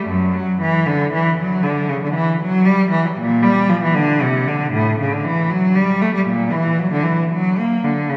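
Radiant and serene, this brief passage cut from a longer baroque-style suite movement for unaccompanied cello unfolds in 12/8 with a flexible, rubato feel. A single bowed cello carries the whole 8.2 seconds, its rich, smooth tone shaded with vibrato and moving evenly through its lower register. A wet church reverb with a long 3.1-second tail places the listener further back in the room, so the instrument sounds distant.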